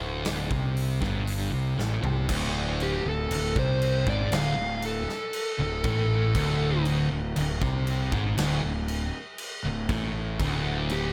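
Stoner and doom metal at a crawling 59 BPM in straight 4/4, this brooding, ominous passage is cut from a longer piece. Two thick fuzz guitars, one warm and one dark, grind out a low riff in the background from the start, while an overdriven fingered electric bass sits up front with a bright, growly fuzz tone. A big acoustic rock kit with a punchy kick, medium-tuned snare, bright cymbals, hi-hat and toms comes in at 0.2 seconds and plays a fill just before the music shifts at 2.3 seconds. From 2.8 seconds a compressed, dark fuzz lead guitar takes a solo up front, soaring well above the riff for the rest of the clip. A light reverb and small room ambience give the heavy sound a close, enclosed feel.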